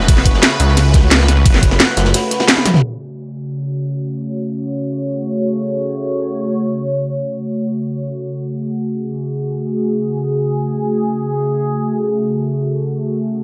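A snarling, detuned sawtooth bass growls up front through the opening 2.1 seconds, its distorted, tube-saturated tone sitting between F#1 and C#2 in this tense, dark technical drum and bass cut from a longer piece in F# minor. The drop hits at 0.0, and at 0.1 seconds a layered electronic kit of cracking snare, bright hats, crash, ride and toms enters, driven by a knocking, tape-tinged kick, while a crunchy acoustic breakbeat kit with dark cymbals and a medium-tuned snare sits gritty and rolled-off in the background. A band accent lands at 2.5 seconds and a drum fill follows at 2.6, closing out the drums just before 3 seconds. From 2.9 seconds the sweeping resonant pad, present from the start with chorus and sidechain pumping, carries the rest alone, its bright sustained chords moving through a long filter sweep that began at 2.8 seconds and runs until 13.4 seconds. A small room ambience and moderate digital reverb give the mix a close, low-passed air, and the passage moves in free time.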